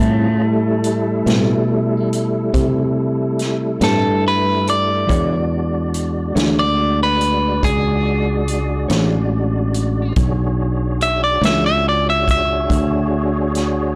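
A blown-out, overdriven and nearly dry recording captures this rollicking yet laid-back slow blues in 12/8, where a clean, compressed electric guitar takes an up-front solo over a dark, fingered second guitar with tremolo that sits in the background until 11.7 s, sustained tonewheel organ chords turning through a slow rotary speaker with chorus vibrato and key click, a round, tube-saturated fingered bass, and a vintage drum kit with a punchy kick and rolled-off top that joins at 0.8 s, as the harmony moves from Am7 to E13.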